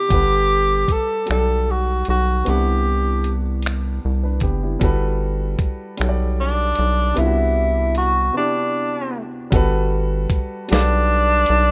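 A slow, straight six-eight groove at 51 BPM, counted in dotted quarters, carries this intimate R&B piece in G major, tuned to A4 = 443 Hz. Up front, a dusty soul sampler-style kit lays down finger snaps, hi-hat, a thumpy kick and a medium-tuned snare, its sound compressed and gritty, alongside a rubbery square bass whose hollow, bouncy filter pluck has a fast attack and a decaying tail. A warm concert grand piano with deep bass and natural tone supplies the accompaniment, moving between Gmaj9 and Cmaj9#11. The mellow tenor saxophone takes the solo melody between D4 and A4 in a jazz style, with light vibrato, soft attacks and scooped notes, sounding distant and roomy yet still up front, with a slapback echo. A break arrives at 8.3 seconds, and a new section opens at 9.5 seconds on Gmaj9, while studio reverb and a rough home-demo mix that stops short of 7.5 kHz give the sound a warm, intimate character.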